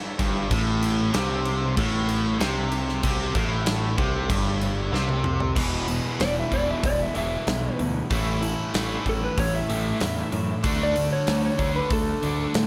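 Light reverb and a studio ambience frame this sunny, driving classic rock excerpt in A major, moving at 95 BPM in a straight 4/4. A very quiet, thick and gritty overdriven tonewheel organ holds sustained chords through a slow rotary speaker from the start, and at 0.2 seconds the band crashes in. A huge arena drum kit sits up front with a punchy kick, medium-tuned snare, bright cymbals and a pumping hall sound. Two overdriven electric guitars play riffs, one biting and warm in the background, the other a bright, cranked stack tone, while a growling picked electric bass, bright, direct and amped, adds its own overdrive down to E1. After a drum fill, the chords move from A to E, A and D, and at 5.6 seconds a very quiet, boxy twelve-string acoustic guitar brings a shimmering, octave-doubled parlour texture, soon joined by a dark, slightly broken-up, compressed slide guitar that takes the solo melody between A4 and E5.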